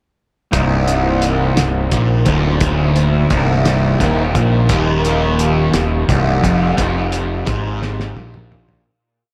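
At 0.5 seconds a dark, mysterious psychedelic rock groove in 6/8 starts all at once. An up-front, double-tracked fuzz guitar plays a low single-note riff through phaser and dub echo, and a growly, overdriven fingered bass doubles it with a punchy dotted figure. Behind them sits a muffled, cloth-damped drum kit with a fat snare and tight kick, also given dub echo, while a mellow, flute-like tonewheel organ holds key-clicking pad chords through a fast rotary speaker in the background. The echo-heavy mix moves from Cm7 to Ebadd9 at 4.7 seconds, begins fading at 6.8 seconds, and closes on a drum fill from 7.8 seconds.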